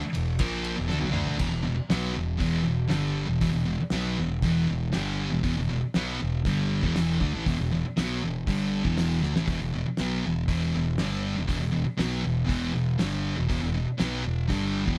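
Rowdy and swaggering, this garage rock piece, cut from a longer track, struts along at 119 BPM in a straight 4/4, with the band captured playing live together in one room under a moderate studio reverb. A thick, double-tracked fuzz guitar sits up front, driving a distorted riff built on an E5 power chord from the first moment. Beneath it, a growling picked electric bass adds overdriven grit, blending a direct and amped tone low in the register. The cloth-damped drum kit enters at 0.1 seconds with a thuddy, dry, dark character: a fat snare, tight kick, dark cymbals, and a rolled-off top across hi-hat, ride, crash and toms. A drum fill from 0.9 to 1.4 seconds launches the main section, and another fill arrives at 9.2 seconds to jolt the groove before the close at 15.0 seconds.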